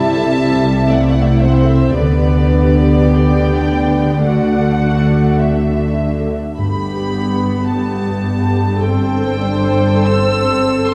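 Up front and intimate, a viola section played sul tasto with light vibrato carries the accompaniment in this tender, serene excerpt from a slow romantic orchestral movement in G major. The pace drifts with rubato around 47-59 BPM, while a pure, floating violin section sings the melody above a woody, lush second violin line that sits distant. A faint, ringing concert harp plucks arpeggios, and a shadowy double bass section and a background cello section share the bass, all soaked in a wet scoring-stage reverb that lasts about 2.0 seconds.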